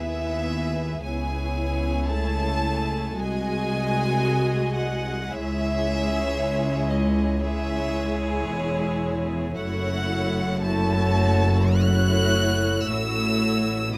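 A slow, rubato 4/4 pulse at 56 BPM carries this serene, tender romantic movement for string orchestra, taken from a longer piece and moving from E through C#m7, G#7/B# and C#m to F#m7. Over the full 14 seconds the first violins sing the high melody with vibrato, the second violins add an inner line with lighter vibrato, the violas fill in the accompaniment, and the cellos and double basses share a deep bass line. All sections are bowed sul tasto with soft attacks, giving an intimate, hushed chamber sound, captured by close, detailed microphones in a dry room.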